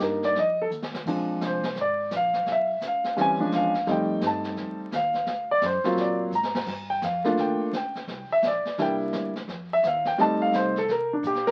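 Jazz piano trio swinging at 171 BPM in F mixolydian with a warm, relaxed mood, this brief cut from a longer piece features an up-front, natural grand piano soloing throughout over woody pizzicato upright bass and a dark-cymbaled, small-room brush kit that adds short fills at 0.7, 6.3 and 11.2 seconds, all heard through moderate studio reverb and the crackle of a very old 78 rpm record as the harmony moves through chords like Bdim7, D7alt and Gm7.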